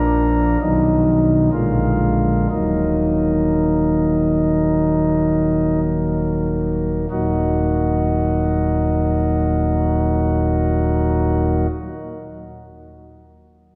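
Classical chorale-style music for solo pipe organ, this short excerpt cut from a longer piece carries a solemn, dark mood in a straight 4/4. The organ, voiced on soft flute stops with a romantic character, sits up front and spans a range from deep pedal tones to the upper middle register, playing alone from the start until 11.7 seconds. The pace slows during the opening passage, which gives way to a second section at 7.1 seconds, and the harmony moves through Bb, B and Bb7 before settling on Ebm at 2.5 seconds. A wet church reverb with a long decay surrounds the sound, while the worn quality of old cassette tape adds a warbling pitch drift that gives the recording a faded, unsteady feel.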